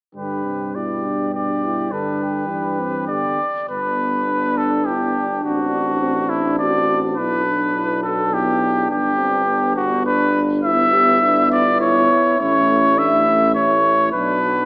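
Noble and stately, this classical brass quintet passage in a rubato triple metre is cut from a longer piece. A clear trumpet carries the melody up front with light vibrato, while a mellow flugelhorn with vibrato sings a distant, roomy second line. Dark French horn and trombone sit in the background as accompaniment, and a tuba with light vibrato anchors the bass, all within a moderate concert hall reverb and a small-speaker sound as the harmony moves from G through D7/A and Em/G to rest on Bm at 14.1 seconds.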